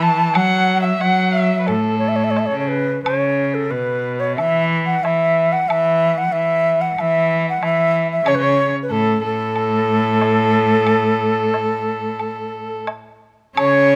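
An airy, vibrato-laden bamboo xiao carries the melody in this graceful, pastoral excerpt of Chinese traditional chamber music, played with a free rubato feel over a focused, boxy bowed cello up front, while a smooth, earthy erhu with portamento sings a second line that drops out at 2.7 seconds and returns at 8.3 seconds, and a close, dry woodblock adds percussion, all caught by detailed close microphones in light reverb.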